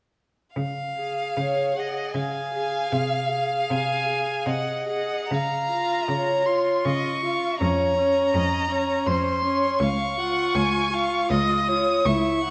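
A focused violin melody with vibrato opens the excerpt at 0.5 s, sitting up front, and a bright bowed cello bass joins almost at once, followed by a smooth, even viola accompaniment and a rich second violin line by 1.4 s, together shaping a tender, rubato classical string-quartet movement in three-four that rings in a recital hall's wet reverb.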